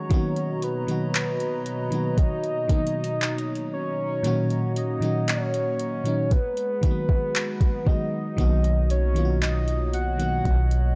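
A glassy, bell-like FM electric piano with a vintage warble sits up front in this tender, romantic contemporary R&B excerpt in B major at a slow 58 BPM, moving through Bmaj7, D#m7/A# and G#m7. A round, detuned octave-layered synth lead carries the melody with vibrato, chorus and delay over a hollow, flute-like pad. A soft, produced drum kit of kick, metallic hi-hat and handclaps rides up front, and a deep, boomy 808-style bass arrives at 8.4 seconds, all set in a dark, warm digital ambience.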